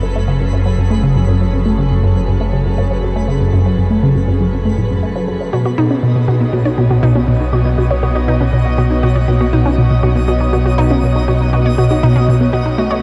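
Cosmic and mysterious, this ambient, sequencer-driven space music moves at 120 BPM in a straight 4/4, cut from a longer piece and shifting from F#m to B at 5.5 seconds. Up front, a squelchy, juicy blip pluck carries the riff, its bright, resonant tone colored by phaser and analog delay. Beneath it, a round analog bass holds the low end with a deep, mellow sustain, while a sweeping resonant pad fades in with full-bodied chords thickened by chorus. A twinkling granular texture sparkles high and faint, fading in through its own reverb, and at 5.5 seconds a lush, punchy unison pluck joins with arpeggios echoed by analog delay and shaped by a filter sweep. The dark production sits in a moderate shimmer reverb that gives the whole a vast, drifting sense of space.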